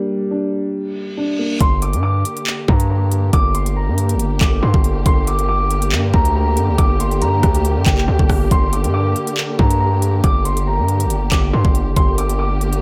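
A dreamy, reverb-soaked mix opens this cold, ominous drill excerpt in G minor at 139 BPM with a half-time feel, as a boxy, filtered concert grand plays low accompaniment and a reverse cymbal rises into the drop at 1.6 seconds. From there a dark baby grand carries a high, mellow melody with long sustain, lush chorus and tape echo over veiled, con sordino strings holding bowed chords with vibrato. Underneath, a saturated, aggressive 808-style bass with a fast attack and a drill kit of knocking kick, crisp hi-hats, handclaps and rim clicks sit up front.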